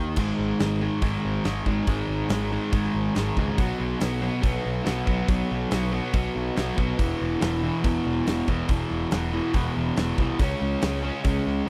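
Brooding and driving, this classic rock excerpt rides a double-tracked, overdriven electric guitar riff that sits up front, moving through G#5, B5, E5 and C#5 power chords. Underneath, a fuzz-drenched picked electric bass growls low, while a huge arena drum kit enters at 0.2 seconds with a punchy kick, medium-tuned snare, hi-hat and bright crash cymbals. The dry, close 1970s-style studio sound keeps the guitar and bass tight, though the polished kit carries an airy hall quality.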